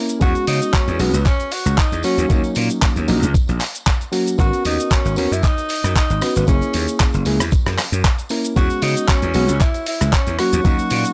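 A reedy, overdriven electric piano opens this sleek, sensual nu-disco excerpt, its chords pumping against the beat as it moves through lush extended harmonies such as E6/9, D#m7, G#m11 and F#9. Almost at once a dusty, sampler-style soul kit of cabasa, handclaps, hi-hat and rim click joins in, along with a very quiet tambourine part that blends a tube shaker and group handclaps. By 0.2 seconds a compressed, thumpy electronic kick sits up front beside a growly, punchy slap bass, its overdrive giving the low end real bite. Over this groove a clear tenor saxophone sings the pop-style solo melody with vibrato, sounding distant and roomy through a digital delay. The mix stays dry and close overall, with a gently swung sixteenth-note feel that keeps the whole cut smooth and seductive until it stops at 11.1 seconds.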